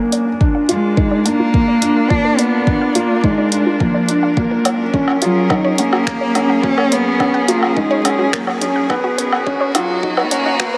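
A straight 4/4 pulse at 106 BPM takes shape as a deep house kit of finger snaps, hi-hat and woodblock enters at 0.1 seconds, joined at 0.4 seconds by a deep, layered electronic kick sitting up front, both carrying a small-room character. This tender, hopeful piano and strings electronica in F# major feels like a build-up cut from a longer piece, moving through A#, F# and Badd9. A felt-muted upright piano plays a soft, intimate riff with audible action noise and delay, while a distant string quartet holds smooth, bowed chords with vibrato, filtered and breathing under sidechain pumping. Behind them, a round, detuned analog pluck spins arpeggios through chorus, delay and sidechain pumping, with a filter sweep on it across the whole passage. From 0.7 seconds a dark, nasal solo cello sings an expressive melody up front, gliding with portamento and vibrato, all of it bathed in a huge ambient reverb.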